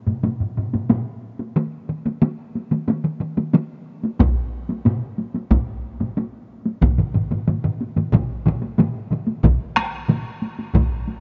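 Lightly reverberant and dark at the top, this short cut from a longer Japanese traditional taiko drum piece moves at a steady, straight 91 BPM in 4/4 with a powerful, driving mood, as two up-front taiko ensembles open together at 0.1 seconds (one close-sounding and struck with hard sticks, the other beaten with heavy sticks in a live room) before a third, close and dry with hard sticks, joins at 1.6 seconds and a fourth of the same hard, dry character, the most prominent of the group, enters at 4.2 seconds and carries into a brief closing passage.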